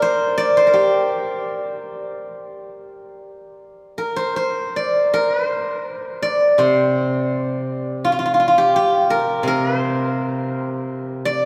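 A steel-string zither opens alone, its fingerpicked notes silvery and ringing, placed up front in the sound. This is Chinese traditional solo plucked-string music, elegant and contemplative, moving with a free, rubato feel over a 4/4 frame. The instrument covers a range from C3 up to D5, and the playing unfolds in two sections, the second beginning at 5.1 seconds and continuing to the end at 11.5 seconds. A lush cathedral reverb with a 5.2-second decay surrounds every note, giving the sense of a church or concert hall. The short passage is cut from a longer piece, leaving an impression of unhurried reflection.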